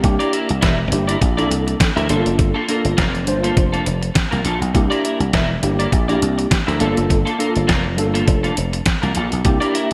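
A swung 102 BPM groove in 4/4 drives this slick, funky early-eighties boogie funk fragment in G dorian, where a detuned, thumpy 8-bit drum machine with tape-warm, small-room character and a bright, punchy thumbed slap bass sit up front (the bass dropping out at 9.6 seconds), while a worn, slightly out-of-tune tine electric piano with ensemble chorus comps over C9 and Gm9 chords and a compressed, slightly broken-up guitar riff shimmers through analog chorus, all set in a lush hall reverb with glossy 1980s digital sheen.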